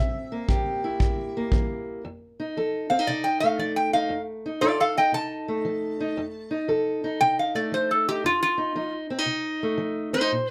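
A bright, nasal resonator slide guitar played with fingerpicks carries the melody over a dark, boxy parlour-style fingerpicked acoustic guitar in this laid-back, gritty, swung country blues, with a punchy, smooth kick drum thumping briefly from 0.5 to 1.7 seconds before the resonator launches into a metallic steel-bar solo at 2.0 seconds, all captured by close, detailed microphones with light reverb and a faint mains hum.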